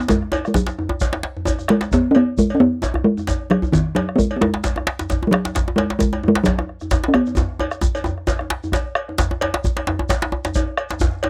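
West African traditional drum ensemble music, driving and festive at 132 BPM in 4/4 with a light swing, where a resonant, up-front talking drum carries the melody in B major pentatonic until 8.7 seconds over two hard-handed djembes, a deep, dark bombo, a grainy, saturated shekere and a metallic, band-limited cowbell, with drum fills at 1.6 and 7.4 seconds before a new section arrives at 9.2 seconds in this dry, close 1970s-style studio excerpt cut from a longer piece.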